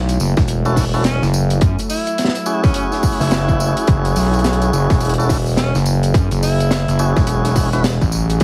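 Heavily compressed and dusted with vinyl crackle, this glitch hop excerpt has a squeezed radio sound with light reverb and a gritty, funky mood over a swung groove. A saturated, aggressive synth bass sits up front from the very start. It is joined by a dark, dry reggae kit of hi-hat and high-tuned snare, a jingly tambourine, and a distorted, layered electronic kick that arrives at 0.4 seconds. Behind them, a detuned, nostalgic pad warbles with chorus and pumping on a single F#m7 chord. A lightly overdriven tonewheel organ with key click and tape echo adds pumping stabs, while a breathy tenor saxophone enters at 1.0 seconds with a whispered, intimate melody of scooped notes and vibrato, roughened by 12-bit sampler grit and tape echo. The saxophone drops out at 7.1 seconds and the organ at 7.8 seconds, as the rest carries on to the cut.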